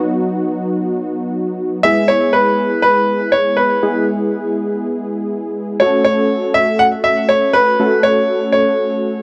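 Mellow analog keys open this wistful yet upbeat pop excerpt alone, their round, detuned sawtooth tone thickened by chorus and shaped by a filter sweep, with a fast attack that decays. At 1.8 seconds a brilliant concert grand piano enters with the melody, sitting up front with a polished, present sound, deep bass and short sustain, its notes trailed by digital delay. The piece moves at 121 BPM in a straight 4/4 in E major, tuned slightly low to A4 = 436 Hz, with the harmony passing from B to E and then to F#m at 5.8 seconds. A light reverb surrounds the recording, and a worn cassette-tape quality adds a warbly pitch drift across the whole passage. The keys continue underneath the piano until the cut at 9.2 seconds.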